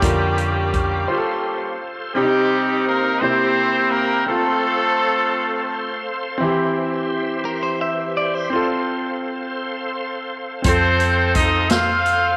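Uplifting and reverent, this slow gospel excerpt in 6/8 at 56 BPM sets a clear, up-front horn section with light vibrato and octave doubling over a natural concert grand piano and a reedy, bright tonewheel organ with key click, fast rotary speaker and chorus vibrato, while a dark, round hollow-body bass and a punchy big-band drum kit drop out after the opening second and return at 10.6 s, a clean, compressed electric guitar adds a brief picked line at 7.5 s, and a wet echo-chamber reverb fills the space.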